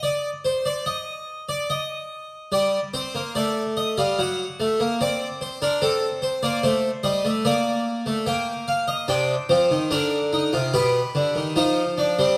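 A brilliant, full-bodied French-style harpsichord with three sets of strings, close-miked and up front, plays this driving yet contemplative baroque-style three-part fugue alone at 73 BPM in a straight 4/4, tuned to A4 = 441 Hz and ranging from B2 to G5, opening unaccompanied by chords before settling into G minor at 2.5 seconds and moving through D/F#, C minor and G/B inside a wet stone room with a 1.4-second reverb tail, in a 12.4-second passage cut from a longer piece.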